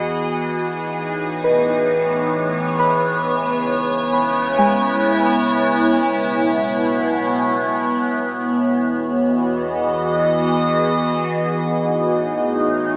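Soaked in plate reverb with a small-speaker character, this spacious, reflective ambient excerpt at 66 BPM in 3/4, tuned to A4 = 435 Hz, puts an evolving, morphing wavetable pad up front with chorus, phaser and slow-attack sustained chords moving from Emaj7 through Amaj9#11, C#m7 and Bsus4, over a very quiet, deep, round sine sub bass, while muted, felt-like synth keys with a dark, intimate tone, chorus and analog delay play soft, decaying arpeggios from 1.4 to 7.7 seconds.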